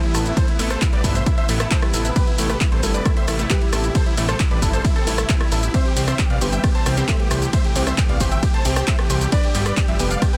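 An overdriven, punchy electronic kick sits up front from 0.4 seconds, driving this bittersweet uplifting trance excerpt in A minor at 134 BPM in straight 4/4. Above it, a huge, euphoric supersaw lead carries the melody between C4 and A5, its detuned unison sawtooth tone compressed, pumping with the sidechain and trailed by tape echo. A fat, detuned sawtooth bass with a filter sweep enters at 0.1 seconds, pumping beneath, while a tape-toned analog drum machine adds handclaps, hi-hat, ride cymbal, rim click and shaker. In the background, a round analog pluck spins chorused, echoed arpeggios with a moving notch, and a very quiet, warbling vintage pad holds slow-attack chords low in the range. Two pianos share a second line: a clear, intimate baby grand with audible action noise and long sustain, and a dark, felt-muted upright with tape echo, both set back in a dense, heavily limited mix with little reverb, as the harmony moves from Amadd9 to Gadd9 at 9.3 seconds.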